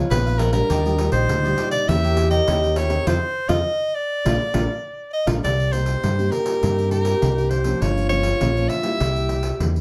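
Heard from further back in a room with a wet studio reverb, this short cut from a longer piece blends samba and choro at 101 BPM in a straight 4/4, its mood bittersweet and yearning. An edgy soprano saxophone carries the melody up front, close-miked and jazz-styled, with a soft attack and light vibrato, while a warm alto saxophone adds a second line with subtone and vibrato. A deep dub fingered electric bass sits prominently beneath them, dark, round and punchy, and a thumb-plucked classical nylon-string guitar fills out the accompaniment. A bright, crisp picked cavaquinho ticks along in the background until 5.4 seconds, as the music moves into its second section, and a jingly, vintage-toned pandeiro played with soft hands keeps the pulse throughout. The band hits an accent from 3.1 seconds, over harmony that drifts through chords such as Ebmaj9, Edim7 and Bb7 before settling on Cm7, Gm7b5 and C7.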